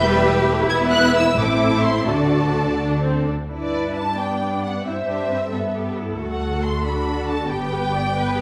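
A lush, reverberant hall sound frames this graceful, cheerful classical-period string orchestra passage in G major and 6/8, moving with a flexible, rubato lilt at around 84-93 BPM. Focused, vibrato-rich violins carry the smooth melody over a second violin line, expressive violas supply accompaniment, and a rich, close cello section joins soft-edged, distant double basses on the bass. The harmony opens in E minor before settling into G major from 3.5 s, all within a brief fragment cut from a longer piece.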